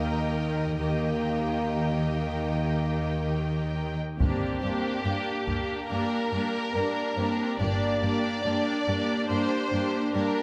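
Dramatic and relentless, this cinematic orchestral film-score excerpt moves at 71 BPM in G minor, with a lush violin section carrying the melody over a second, more focused violin line, bowed viola accompaniment with vibrato, and a distant horn section holding sustained chords. Cellos and double basses ground the bass, the double basses dropping out at 8.0 s, while the harmony shifts from Eb to G minor at 4.2 s, where a taiko ensemble struck with hard sticks breaks in until 5.9 s. A spacious scoring-stage reverb surrounds the ensemble.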